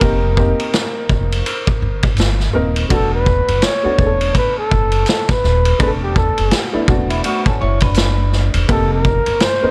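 A nocturnal, cool jazz-hop excerpt at 83 BPM in 4/4 with a swung sixteenth-note feel, where a breathy, whispered flugelhorn carries the melody with scooped notes and vibrato over a dark, slightly detuned upright piano whose action noise is audible. Pizzicato upright bass with a woody tone joins a gritty, saturated vintage drum kit that sits up front with dark cymbals and a punchy kick in a small room, moving from F9sus4 to E9sus4 at 2.9 seconds. A clean, fingered electric guitar adds a brief second line from 7.1 to 8.7 seconds before the harmony returns to F9sus4.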